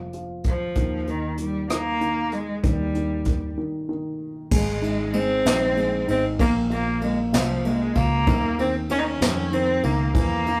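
A tender, swaying pop ballad in six-eight opens with an intimate concert grand piano and a dark, round fingered electric bass, joined at 0.1 seconds by a jazz brush kit with dark cymbals, a high-tuned snare and a boomy kick sitting up front. At 0.5 seconds a single bowed cello enters with the melody, its tone rich and smooth with vibrato, placed up front yet carrying a distant quality. Moving at 64 dotted-quarter beats per minute in Ab major, the harmony settles from a chordless opening onto Eb before a break at 3.6 seconds leads into a new section built on Ab, Bbm and a lush Dbmaj13. The piano's short sustain and audible action noise lend a natural closeness, while the foam-muted bass stays punchy beneath it. A small room's moderate reverb and tube saturation give the whole a rough rehearsal-room character, and the passage is cut from a longer piece.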